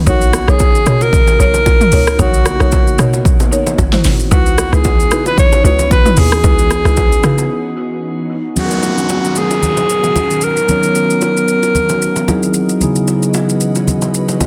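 A swung amapiano groove at 113 BPM in B major rides on a punchy, overdriven deep house kit with metallic hats and a fat snare, backed by hard-handed congas and bongos and a tight, percussive log drum bass that drops out at 7.5 seconds for a short break. Up front, a breathy, intimate alto saxophone carries the soulful melody through tape echo, while a glassy FM pad with chorus and reverb pumps softly underneath and a buzzing, woody marimba adds echoed stabs. At 8.6 seconds a mellow, clean tine electric piano enters with the accompaniment as an electronic downlifter sweeps through this warm excerpt from a longer piece, all sealed in a dense, heavily limited modern master.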